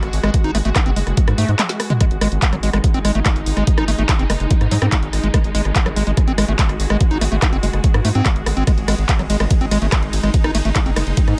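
An overdriven, knocking electronic kick sits up front and drives this psychedelic trance piece, its layered, produced tone re-recorded in a small room. Around it, a drum-and-bass-style kit adds handclaps, bright hi-hats, ride cymbal, rim clicks, a woody snare and toms, with a short drum fill between 1.6 and 2.0 seconds. Beneath, a round analog bass holds the low end with a deep, mellow, wave-folded tone that evolves as it sustains. From 0.2 seconds, a squelchy, gritty acid bass riff cuts through with resonant filter sweeps, saturation, sidechain pumping and dub echo. A swarming, tense drone of detuned unison sines fills the background with slow-attack, granular sustained chords, shaped by sidechain pumping and washed in its own reverb. The mood is driving and psychedelic, set in a digital ambience, and the passage is cut from a longer piece.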